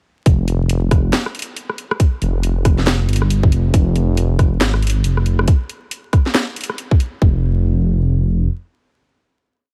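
A meditative, cavernous deep dubstep piece opens straight into the drop, where a dark, rumbling detuned saw bass in chopped phrases sits up front beneath a tight, half-time electronic kick and a swung garage kit of cracking snare, closed hi-hat and rim click in a small dry room dusted with vinyl crackle, before the drums stop around 7.3 seconds and the bass rings alone into a final note until 8.5 seconds.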